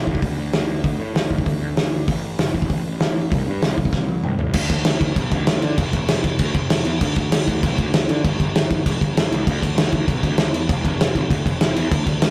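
A rough rehearsal-room recording with saturated grit and a touch of reverb frames this rowdy, rebellious punk rock fragment, driving at 195 BPM in a straight 4/4. A bright, growly fuzz electric bass, picked and overdriven, ranges from deep lows up into its middle register. Up front, a loose indie drum kit with a dark, rolled-off top, a fat snare and a punchy kick draws on crash, hi-hat and toms, and throws a fill at 3.9 seconds that tips the music into a new section at 4.5 seconds.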